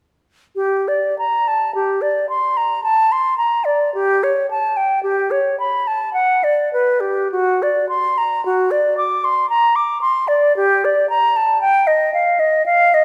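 Classical music in a baroque style, this fantasia for unaccompanied flute carries a solemn, introspective mood. The concert flute plays alone from 0.6 to 13.0 seconds, its pure, straight tone placed up front with a warm quality and tongued articulation. The pulse moves in three with uneven beats and free rubato, so the line breathes at its own pace rather than following a strict beat. Its range runs from F#4 up to D6, and a moderate concert hall reverb with a two-second decay gives the solo a spacious resonance. Cut from a longer piece, this brief passage feels like a meditative statement.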